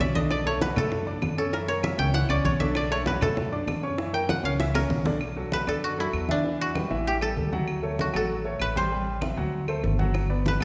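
A koto played with fingerpicks leads this sultry, fiery Afro-Cuban jazz fragment from its first moment, taking a dry, up-front solo over a sustained upright piano whose audible action noise gives it an intimate, polished presence. Beneath them, a dark, thumpy pizzicato upright bass on gut strings anchors a harmony that moves between Bm7 and F#7 before opening onto Em, Dmaj7, Am7 and D7 in the second half. Bright, low-tuned congas played with soft hands sit in a live room alongside round, low-tuned bongos tucked in the background, and compressed, saturated claves with a woody click join a moment later. A drum fill closes the koto solo just before the midpoint, the bongos drop out at 5.1 seconds and return at 10.1 seconds, while the other parts carry on. The whole is bathed in a lush scoring-stage reverb suggesting a church or concert hall, its long tail adding a spacious glow to this fragment cut from a longer piece.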